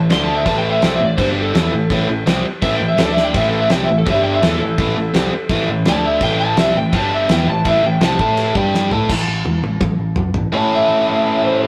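Raw and rowdy, this short garage rock cut from a longer piece charges along at 167 BPM in a straight 4/4, cycling through D5, A5 and G5 power chords before landing on A at 10.5 seconds. A biting, overdriven guitar riff, double-tracked and up front, runs from the first moment to the end, while a hollow-body short-scale bass, picked and amped with a dark, round tone, holds the low end until 10.5 seconds. An electric slide guitar, dark and slightly broken-up and played with fingerpicks, takes a solo through the opening 9.1 seconds, then returns briefly at 10.8 seconds. The cloth-damped, thuddy drum kit sits close, with a fat snare, tight kick, dark cymbals, toms and crash, and fills at 3.2 seconds and again leading into and through the short break from 9.1 to 10.5 seconds. The whole thing sounds like a rough rehearsal-room take, with tube saturation and a moderate stone-room reverb giving it a gritty, live edge.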